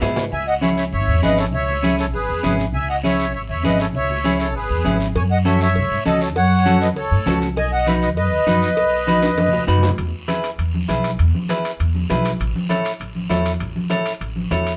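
A reedy, sweet accordion with light tremolo tuning carries the melody up front in this joyful, danceable cumbia at 199 BPM in 4/4, playing until 9.6 s. Beneath it, a bright, twangy clean electric guitar supplies picked accompaniment, and a woody, dark upright bass with steel strings is played pizzicato. Raspy guiro, close and dry, runs throughout beside ringing, medium-tuned congas with a vintage, band-limited tone. Ringing timbales and cowbell with a metal shell sound briefly at the start and return at 5.2 s, and drum fills open the track and arrive just before the second section begins at 10.0 s. The chords move from C#m7 through F#m and B to E and A, in a moderate studio reverb.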